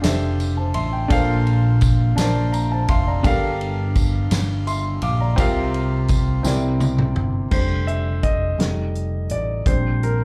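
Jubilant and soulful, this slow gospel passage in 6/8 is cut from a longer piece and sounds like a live gig heard through a club's PA, with only a light touch of room reverb. An up-front grand piano carries the accompaniment through rich extended chords, its intimate tone marked by audible action noise and a slapback echo, and it adds a brief fill at 2.2 seconds. A round, fingered electric bass holds the low end beneath an acoustic country drum kit with a fat snare, punchy kick, hi-hat, ride, crash and toms. A jingly tambourine sits distant in the background until 7.1 seconds, and a drum fill leads into a new section. At 7.5 seconds the piano moves into a short solo that runs to the end.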